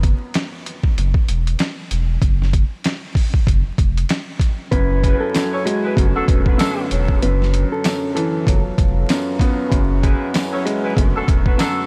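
A small-room, lightly reverberant sound with vinyl crackle frames this moody, dark boom-bap hip-hop fragment in F# minor at 96 BPM with a swung 16th feel, opening on a break where gritty, pitched-down sampler drums with a thumpy kick and a medium-tuned snare sit up front over a deep sine-and-triangle sub bass. At 4.7 seconds a woody upright piano with cassette-tape coloring, a round tonewheel organ turning through a slow rotary speaker and a clean, fingered electric guitar melody with analog delay arrive, moving through chords like F#m11, Bm9 and Dmaj9/F#. A vintage jazz-style saxophone section with light vibrato adds dark stabs from 5.0 seconds, and a jingly tambourine sits in the background.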